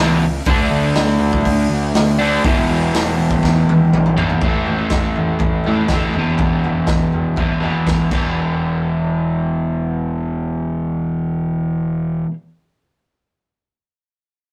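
A crunchy, double-tracked overdriven guitar riff sits up front in this rowdy, raw garage rock cut from a longer piece, moving through D5, E5, A5 and E5 power chords at a straight 122 BPM in 4/4. A punchy picked bass with fuzz grinds underneath, while a gritty drum kit with a boomy kick, dark cymbals and a pumping small-room sound enters at 0.5 seconds, plays a fill at 3.4 seconds and drops out at 8.2 seconds. Light reverb and a rough rehearsal-room recording keep the whole thing loose and scrappy.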